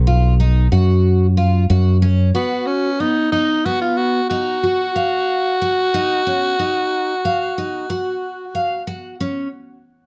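Set in a straight 11/8 at 184 BPM counted in eighths, this bright, driving fragment of progressive band music sits in B lydian on a B chord, with a growly, up-front fingered electric bass opening and playing until 2.3 seconds while a picked twelve-string acoustic guitar spins woody, shimmering, octave-doubled arpeggios throughout. At 2.4 seconds a raspy tenor saxophone takes the solo melody, gritty yet smooth on top, with scooped notes, light vibrato and tape echo. The production is dark and warm with light reverb.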